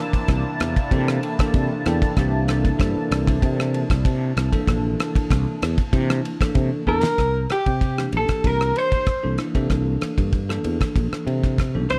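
A mellow soprano saxophone with light vibrato, scooped notes and slapback echo carries the melody from 6.9 seconds, joined by a clean, picked hollow-body jazz guitar on a second line, in this slick, bright electric jazz fusion excerpt at 96 BPM in C mixolydian. Beneath them, a bell-like tine electric piano accompanies throughout and adds a fill early on, while a growly fretless bass and a dry, damped 70s drum kit with a fat snare, tight kick and dark cymbals sit up front. A resonant, detuned sawtooth pad with chorus sustains a C13 chord until 7.2 seconds, and the whole piece sits in a light reverb.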